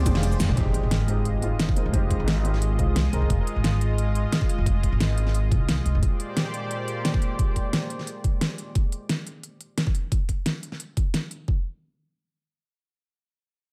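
A drum fill opens this soulful, melancholic liquid drum and bass excerpt at 176 BPM with a light 16th-note swing, as a dark, mellow grand piano with lush chorus and delay is filter-swept until 3.3 seconds over a thick, detuned, warbling unison pad, a woody, thumpy pizzicato upright bass, an overdriven knocking electronic kick, and a tape-warm kit of fat snare, crisp hats, ride, cabasa and toms, with an electronic impact at 0.6 seconds and the drums carrying on past the pad and bass, all around chords moving from Bb13 to Fm7 in light digital ambience.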